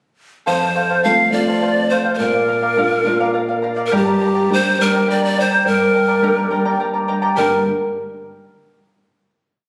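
Andean folk in G minor at a slow 70 BPM in a straight 6/8, this short, complete piece carries a melancholic, earthy mood, with a breathy, bright bamboo pan flute up front singing a motif-based melody in balanced phrases with vibrato and a soft, chiffy attack, while a shimmering fingerpicked charango with double strings strums open chord shapes and an up-front, thumb-plucked nylon-string guitar supplies bass notes and chord figures for the pulse, moving through F, Bb and Gm before a final chord at 7.4 seconds, all heard through a wet hall reverb as if captured on a phone in the room.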